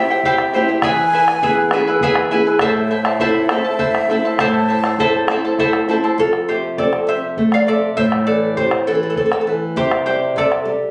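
Andean folk in A minor at a slow 67 BPM in a straight 6/8, this earthy, festive excerpt opens with an airy, chiffy large quena carrying the melody through tape echo until 5.2 s over up-front fingerpicked charango with shimmering double strings, a small nylon-string guitar and a round, dry bombo, before the charango takes a solo from 6.2 s over chords moving from C through E and Am to F, all heard through a phone's roomy capture with club reverb, compression and a dulled top end.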